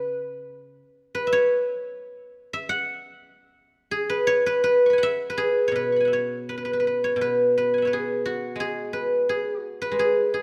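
A solo guzheng, plucked with fingerpicks and sitting up front in light reverb, carries this serene, flowing fragment of traditional Chinese music in a free, rubato 2/4, its silvery, ringing tone spanning low to high registers before the piece moves into a new section at 5.7 seconds and is cut off at 10.4 seconds.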